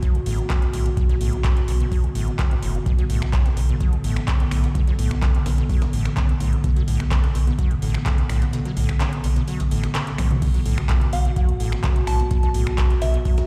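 Heard as if played through a big sound system in a bare room, with a large studio reverb hanging over it, this gritty, trippy acid house cut from a longer piece runs at 127 BPM in a straight 4/4 and sits on B minor throughout. An up-front, deep electronic kick anchors the groove beside a round sine sub bass with tube saturation and sidechain pumping, while a squelchy, resonant sawtooth acid bass riff gets overdrive, analog chorus, cassette tape grit and tape echo. An electro analog drum machine adds metallic hats, crash, finger snaps, handclaps and toms, its tape-warm tone re-recorded in a large room, and a very quiet, compressed, pitched-up breakbeat sampler kit contributes hi-hat and a medium-tuned snare from a small room. Underneath, a dark, warbling, detuned pad of square and triangle waves holds nostalgic lo-fi chords with chorus, built-in reverb and pumping. The kick drops out at 8.5 seconds, a drum fill lands at 10.2 seconds, and a soft, pure FM bell melody with chorus and tape echo enters high at 11.1 seconds.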